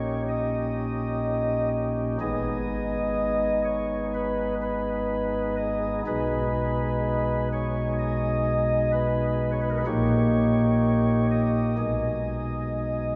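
Solemn and grave, this short excerpt from a longer classical chorale-style piece for solo pipe organ moves at a slow 62 BPM in 4/4 with a flexible, rubato feel in G# minor. The organ's soft flute stops sit up front with a baroque voicing and a tremulant, spanning a low G#1 up to D#5 as the harmony circles between D#7/A#, G#m and G#m/B. A lingering church reverb of about 2.6 seconds surrounds the sound.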